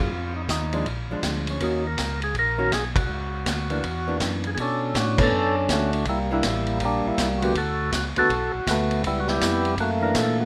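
Soul jazz organ trio in a swinging 4/4, bluesy and soulful, heard as a short cut from a longer performance. A percussive tonewheel organ carries the melody up front, its key click and second-harmonic percussion ringing through a slow rotary speaker. Beneath it, a clean, dark archtop guitar, picked on a hollow-body electric, fills in the accompaniment, while a fat tonewheel organ bass, also turning through a slow rotary, holds down the low end. A vintage acoustic drum kit joins at 0.5 s with a punchy kick, a medium-tuned snare, hi-hat, ride and crash, its dark cymbals and gritty, saturated tone rolled off at the top. The band hits accents together at 2.9 and 5.1 seconds, and at 4.6 seconds the tune moves into a new section with rich extended and altered chords, all set in a light reverb.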